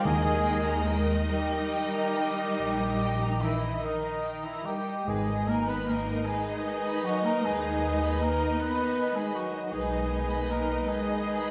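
A rich, up-front double bass section anchors this solemn, elegiac fragment of a slow romantic orchestral movement in G# minor, moving in a rubato 12/8 at roughly 46-55 BPM. Above it, a lush violin section carries the singing melody with vibrato, a soft attack and a smooth top. A second, more focused violin line, a portamento-inflected viola section, and a close, even cello section fill out the strings. Quieter woodwinds add colour: a pure, straight-toned flute ensemble, a vintage-sounding cor anglais, a very soft clarinet and a mellow bassoon. A gentle trumpet adds stabs and a horn section brings in sustained chords from 0.9 s, while round, calf-headed timpani played with soft mallets sound in the background until 6.2 s. The harmony moves from D# to G# minor and then to G# minor over B, and the basses drop out at 10.7 s, all wrapped in a wet scoring-stage reverb.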